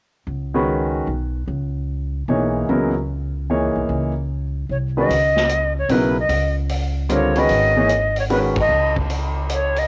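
A home cassette recording with small-room ambience carries this searching, cool modal jazz fragment in 3/4 at 150 BPM in C# dorian, where woody pizzicato upright bass and a clear, polished baby grand piano open on a C#13sus4 chord, an airy, bright flute with vibrato takes the melody at 4.7 seconds, and a vintage drum kit with dark cymbals and a punchy kick joins at 5.1 seconds before a band accent at 8.5 seconds.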